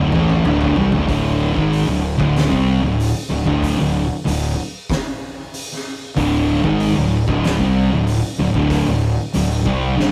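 A dark, up-front fuzz guitar drives this sludgy, brooding stoner and doom metal fragment, joined by a second, warm, distorted fuzz guitar picking a riff from the background, while a round, overdriven fingered bass sits prominently beneath them. An oversized, low-tuned drum kit opens with a fill that lasts until 1.1 seconds, then carries on with a fat snare, punchy kick, hi-hat and toms, all gritty and saturated in a bright, pumping stone room. The whole track has the rough feel of a rehearsal room, with warm saturation and moderate reverb.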